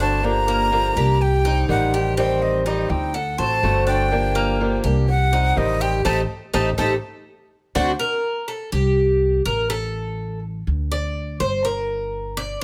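A breathy jazz flute with vibrato carries the melody from the start over fingerpicked, boxy swing-style acoustic guitar, bright metallic arpeggios on the double-strung Cuban tres, and a woody, thumpy pizzicato upright bass, setting a sultry Cuban son and guajira groove at 124 BPM in G harmonic minor. After a band accent from 6.1 seconds, the flute and guitar drop out at 7.9 seconds, and the tres takes a solo from 8.0 seconds over the dark, gut-string bass, all in light reverb in this cut from a longer piece.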